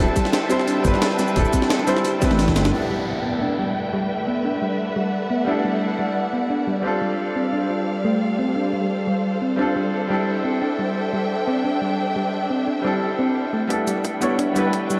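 This liquid drum and bass excerpt at 175 BPM opens on a drop, with a bright grand piano, dark bowed strings, a deep rumbling detuned saw bass, soft low-tuned bongos, an overdriven electronic kick and two breakbeat kits (one gritty and pitched up, one crunchy and very quiet) over D9sus4, until a drum fill at 2.2 s hands over to an electronic downlifter at 2.7 s. From there the piano, with its audible action noise, and the lush, up-front strings carry the sus4 chords while a round, tine-like synth pluck arpeggiates through chorus, cassette-tape colour and diffuse delay under a filter sweep. At 13.7 s the sampler-style kit and tight kick return for a build-up, all of it soaked in a dreamy hall reverb.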